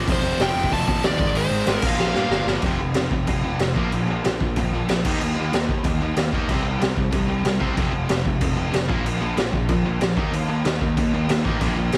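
A raw garage drum kit sits up front in this energetic, rebellious punk rock excerpt, its high-tuned snare, boomy kick and gritty, saturated small-room sound driving crash cymbal and hi-hat in a straight 4/4, with a drum fill from 2.0 to 2.6 seconds. Behind it, two distorted guitars grind out the riff, one sludgy and overdriven, the other tight and bright. A fuzz picked electric bass growls low in the background. A smooth, overdriven lead guitar carries a bright picked melody high above only in the opening moments, dropping out at 2.5 seconds as the music moves into a new section of power chords. The recording is dry, with little reverb, keeping the rebellious attack blunt and immediate.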